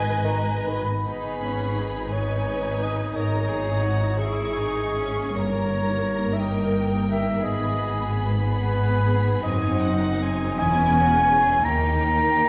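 A reverberant recital-hall sound, heard from well back in the room with a softened top end, frames this slow, rubato orchestral movement in 6/8 and G# minor, a yearning, melancholic passage cut from a longer piece. A distant, focused violin section carries the high melody with vibrato over a lush second violin line, even, vibrato-rich violas, ringing fingerpicked harp arpeggios in the background, and a bass of rich cellos and expressive double basses. An airy flute group sounds only until 1.1 s, a roomy bassoon appears briefly from 0.2 s, and a mellow clarinet up front holds a smooth second line from 0.2 s to the end, as the harmony moves from G#m toward a closing D#.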